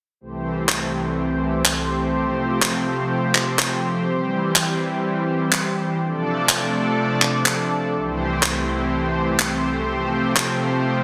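Uplifting and hopeful, this progressive house fragment moves at 124 BPM in a straight 4/4, tuned to A4 = 437 Hz. A thick, detuned sawtooth unison pad with a slow attack and warbling chorus sustains bright, vintage chords from 0.2 seconds, cycling through Am7/C, Fadd9/C, C and Dm/C, while layered, overdriven electronic handclaps, re-recorded in a small room, sit up front from 0.7 seconds. A moderate hall reverb and a dense, heavily limited modern master give the track a polished sheen.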